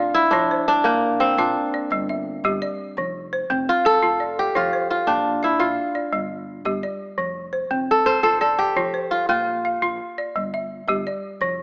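Hypnotic and warm, this fragment of West African string and xylophone music in 12/8 sets a bright, ringing, fingerpicked kora melody up front over round, woody balafon arpeggios struck with hard rubber mallets and a dark pizzicato upright bass in the background, with the whole recording carrying a moderate recital hall reverb and a small speaker sound.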